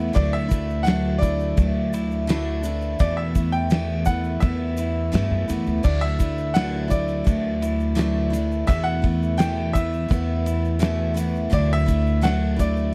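A dry, close 1970s-style studio sound frames this hopeful, jangly folk rock and heartland rock excerpt at 84 BPM in D major, where a full-bodied jumbo acoustic guitar picks its accompaniment beside a slightly broken-up electric guitar riff in the background, a woody pizzicato upright bass sitting up front, a damped drum kit with a fat snare and rolled-off top, a grainy egg shaker, and a brilliant grand piano melody ringing high over the shifting Dadd9 and Esus4 chords.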